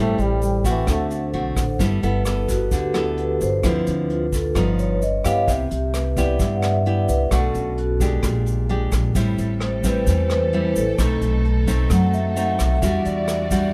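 This breezy, sunny bossa nova fragment in G major opens with a warm, softly attacked trombone phrase carrying light vibrato, heard up front over fingerpicked nylon-string guitar, ringing vibraphone and pizzicato upright bass at 131 BPM in a straight 4/4. The trombone drops out at 1.3 s, and from 1.8 s the vibraphone takes a solo, its metallic tone colored by slow motor vibrato and a vintage, band-limited character. The guitar sits close and full-bodied with fresh strings and audible finger squeak, while the woody, thumpy bass stays dark and up front. Brushes on a vintage kit with a tight kick, hi-hat and rim click sound rolled-off in a small pumping room, and a grainy tube shaker sits in the background. At 9.2 s a lush, distant bowed string section adds smooth sustained chords, and the dry mix moves through harmonies such as Am7, Gaug7 and B7b9 before arriving on Em9.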